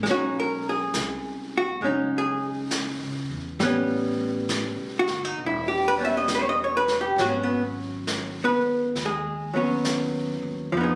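A dark, clean archtop guitar sits up front in this brief cut from a longer jazz ballad, its picked hollow-body tone compressed as it carries the accompaniment through chords of B69, A9 and Abm7 in a slow, swung 4/4. Beneath it, a growly, woody upright bass plays pizzicato on steel strings, while a vintage brush kit, with its rolled-off top, adds brushed snare and hi-hat from 0.1 seconds. Caught on a phone in a club with light reverb and compression, the mood is melancholic and smoky, the tuning sitting slightly below standard pitch.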